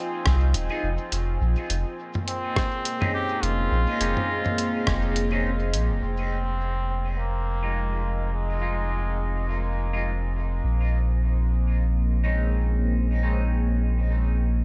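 A swung groove from a muffled, pitched-down electronic kick and an overdriven lo-fi sampler-style kit of hi-hat, rim click and toms carries this hazy, spacious ambient dub excerpt, with a round, mellow sub bass up front and the drums gone by 5.9 s. A nasal, brilliant trombone with straight mute carries the melody through dub echo until 10.3 s, over warbling, detuned pad chords moving between Fm7 and Bbm11 and twangy clean electric guitar stabs coloured by phaser and dub echo. From 6.0 s, filter sweeps run through both the pad and the guitar, all set in light digital ambience.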